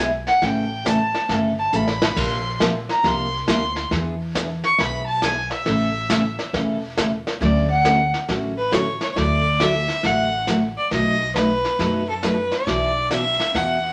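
Bright, full-bodied picked acoustic guitar and woody, thumpy pizzicato upright bass open this playful, swinging western swing excerpt in D major at 137 BPM, joined almost at once by a vintage brushed drum kit with dark cymbals and a punchy kick, which plays a fill at 1.7 seconds, and by a biting, nasal fiddle soloing up front with light vibrato and an airy bow, before a second, intense fiddle takes up the melody at 8.6 seconds over chords that turn through Bbadd9, E7 and B7, all set in a wet studio reverb.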